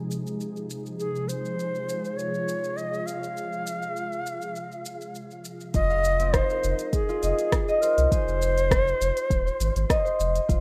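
Organic downtempo in F minor at 101 BPM, this meditative, mystical excerpt from a longer piece opens on an ethereal, detuned pad holding an Fm7 chord with ensemble chorus, built-in reverb and sidechain pumping, under smooth electronic hi-hat, rim click and shaker. From 1.0 seconds an up-front Native American-style cedar flute carries the melody with a woody chiff, vibrato and digital delay. At 5.7 seconds the pad drops out as a fingerpicked, ringing concert harp arpeggiates with delay over a round sine sub bass and a deep electronic kick, all in a rough home demo mix with light reverb.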